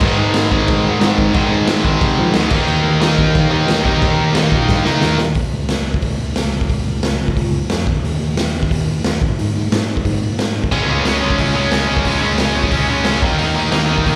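Punk rock at 179 BPM, energetic and rebellious, heard as a live club gig through the PA in this cut from a longer piece, with a clean tine electric piano carrying the bass line throughout beneath a gritty, punchy garage drum kit with dark cymbals, while two bright picked electric guitars, one overdriven in the background and one tight and distorted up front, both with slapback echo, play power-chord riffs, break off at 5.2 seconds after a drum fill begins at 4.7, and return at 10.7 seconds.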